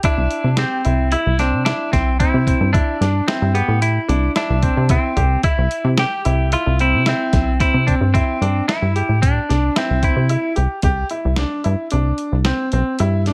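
A straight 5/4 pulse at 111 BPM in C major drives this intricate progressive instrumental excerpt, where a gritty, compressed sampler-style drum kit with a thumpy kick sits up front beside a punchy, funky analog bass of sawtooth and pulse-wave plucks, while a brilliant baby grand piano with audible action noise spins arpeggios and a clean, picked semi-hollow electric guitar carries a second line until 10.5 seconds, dropping out during a brief break from 10.3 seconds that leads into a new section at 10.8 seconds, all in light reverb.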